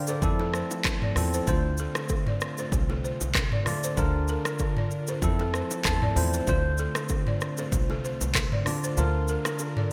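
A clean tine electric piano, up front through a combo amp with a lush chorus, opens this sultry, hypnotic afrobeats passage alongside an airy, breathy pad that warbles softly in the background with a slow attack and long release. Almost at once a buzzing balafon riff arrives, played with soft rubber mallets and trailed by delay, while an electronic afro-pop drum kit with a deep kick, crisp hats, handclaps, rim clicks, shaker and toms sits up front in gated reverb. Very quiet bongos and congas add a bright, saturated layer under soft hands, and a pizzicato upright bass with gut strings gives a dark, thumpy, woody low end. The lightly swung groove circles through Fmaj7, Dm7 and Bb/D, with the electric piano slipping in a fill at 5.5 seconds and again at 9.6 seconds. The kick drops out from 9.0 seconds, and the whole cut carries a bright 1980s-style digital sheen with a light reverb.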